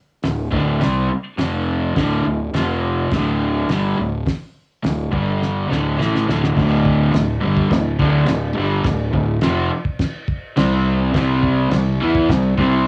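From 0.2 s a double-tracked, overdriven garage guitar riff sits up front over round, fuzzed fingered bass and a cloth-damped, thuddy acoustic kit with a fat snare, tight kick and dark cymbals, moving through D5, F5, G5 and C5 in a swaggering, raw 104 BPM garage rock cut that turns on a drum fill from 5.4 s into a new section at 6.6 s, all caught with light reverb on a home cassette recording taken from a longer piece.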